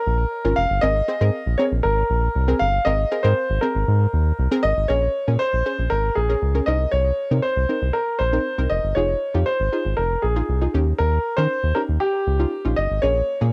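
This confident, driving dance-pop passage opens with a clear, polished baby grand piano carrying the melody between G4 and F5, placed up front and colored by cassette tape and tape echo. Alongside it, an analog pluck supplies accompaniment from Bb3 to C5. Its full-bodied sawtooth tone carries a noise layer and a filter sweep, with a fast attack and short decay, thickened by chorus and cassette tape. A round analog bass joins at 0.1 seconds, blending sawtooth and sine into a deep, dark, sustained low end from F1 to Eb3 that sits forward in the mix. The groove runs at 118 BPM in a straight 4/4, in Bb dorian tuned to A4 = 439 Hz, moving from Bbm and Abadd9 into a new section at 4.9 seconds built on Bbm7, Cm7, Fm7 and Eb7. Light reverb and the character of a home cassette recording frame the piece, which is cut from a longer work and ends at 13.5 seconds.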